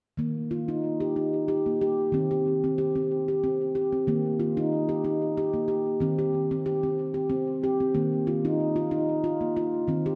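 Dreamy and gentle, this meditative world excerpt features a solo handpan with a ringing, mellow stainless-steel tone, played with soft fingertips and sitting up front in a boxy small-room sound. It moves at 93 BPM in an unhurried 3/4 with a light swing, staying within Eb major pentatonic between Eb3 and G4 as the harmony rests on Eb and Cm/Eb, then reaches Bb5/Eb near the end. Tape echo on the handpan and a lush plate reverb create an echo-heavy wash, and a second section begins at 4.1 seconds.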